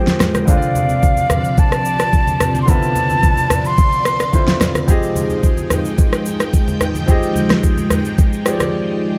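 A clear, intimate grand piano and a lush vintage string machine open this hypnotic, deep amapiano cut, the piano's action noise audible beneath its long sustain while the sawtooth string chords glow with phaser, ensemble chorus and sidechain pumping. At 0.1 s an electronic R&B drum kit arrives up front, its knocking kick and fat overdriven snare joined by rim click and shaker, with low-tuned, compressed congas sitting in the background. An airy, close-miked silver flute carries the melody from 0.5 s to 4.6 s, its tongued notes shaded with vibrato. The harmony moves from Dm9 to Fm9, and the drums and congas drop out for a short break at 8.7 s, leaving the piano and strings to ring on. A moderate concert hall reverb gives the whole a spacious setting.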